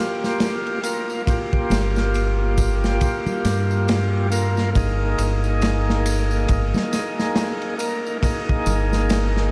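Trip hop with a smoky, brooding mood, cut from a longer piece: a thick, overdriven tonewheel organ with key click, slow rotary speaker, tremolo and tape echo sits up front over a gritty, saturated breakbeat kit of tight kick, dark ride cymbal and medium-tuned snare, with soft tambourine and congas, and a round, punchy dub bass entering at 1.7 seconds, the mix soaked in dreamy cathedral reverb as the harmony moves from Gm7 to Absus2/G.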